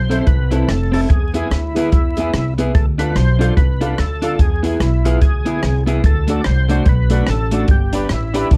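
A gritty, overdriven tonewheel organ carries the melody from the start, its key click and chorus vibrato turning through a slow rotary speaker, over a woody, thumpy upright bass plucked on gut strings in this driving, energetic ska excerpt at 146 BPM with a swung feel. An electric guitar at the edge of break-up adds compressed, picked accompaniment with slapback echo, an intimate, boxy upright piano with audible action noise punches in stabs, and a compact cocktail kit keeps hi-hat, punchy kick and rim click dry and up front. The chords move from Am through E, Dm and D to G, all in light reverb and set against a bed of vinyl crackle.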